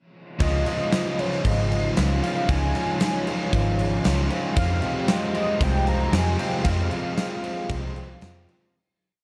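A lightly reverberant small-room sound frames this brooding, dreamy shoegaze and dream pop piece at 115 BPM, where a huge arena drum kit with a punchy kick and bright cymbals and a round, foam-muted vintage bass sit up front beneath two overdriven guitars strumming chords in the background (the semi-hollow one carrying reverse reverb, the lo-fi garage one analog chorus), a shimmering, woody twelve-string acoustic picking very quiet arpeggios, a nasal analog pad holding chords, a jingly tambourine entering at 0.9 s, and a velvety, chorused synth lead with tape echo singing motif-based phrases over Dbmaj9 and Fm9 before a fade-out from 6.7 s.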